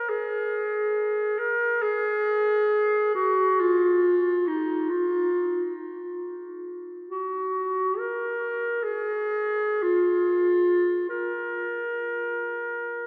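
A vast, echoing cathedral reverb with a 6.5-second decay surrounds this recording, so each phrase hangs in the air long after it is played. Within that space a single clarinet carries the whole classical piece on its own, in free time and with an expressive feel. Its tone is clear and roomy, set up front yet with a distant quality, and it keeps to a narrow range from Eb4 to Bb4. The mood is mournful and lonely, and the tuning sits at A4 = 445 Hz. The passage runs for about 13.1 seconds and is cut from a longer work.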